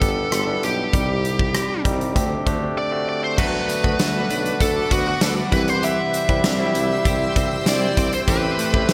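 A biting, overdriven lead guitar carries the melody up front in this uplifting, nostalgic excerpt of 1980s-style pop, moving at 98 BPM in a straight 4/4 over chords that run from G through Cm and D7sus4. A big rock drum kit sits just as far forward, its punchy kick, medium-tuned snare, rim clicks, hi-hat and bright crashes treated with gated reverb, while a barky, clean tine electric piano supplies accompaniment and a clear tuba with vibrato holds down the bass from the background. At 3.4 s the harmony shifts to D6 and then C, and a twangy, compressed twelve-string electric guitar joins with a picked riff touched by subtle chorus, alongside a very quiet, jingly tambourine. A shimmering, ethereal pad enters at 4.3 s with sustained chords high in the mix's register, its slow attack, octave-up shimmer and grainy texture softened by chorus and its own reverb. The bright digital production places the parts in a lush hall reverb, and the passage closes on Am7 at 8.3 s before it is cut off.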